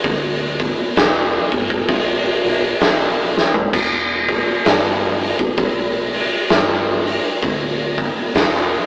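An oversized, low-tuned acoustic drum kit sits up front in this sludgy, brooding stoner and doom metal fragment, its boomy kick, fat snare, dark cymbals, hi-hat and toms saturated and gritty in a pumping big room, with a fill at 3.3 seconds. Behind it, a hollow-body short-scale picked electric bass grinds through overdrive with a dark, round, amped tone over a swung 4/4 feel. The whole take carries a rough rehearsal-room character with light reverb, tube saturation and an AM radio colour.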